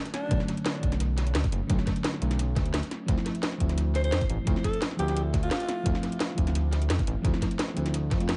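A straight, rolling liquid drum and bass groove of cracking snare, metallic hats and a gritty, overdriven thumpy kick carries this lush, echo-heavy excerpt, where an up-front smooth sawtooth synth bass with vibrato sits under a soft, round, dark FM electric piano washed in chorus and tape echo, moving from Bm9 to Dm9 at 3.1 seconds, while a breathy, raspy, growling alto saxophone, close-miked in a jazz style, appears briefly at the start and returns for a short solo phrase from 4.0 to 6.0 seconds.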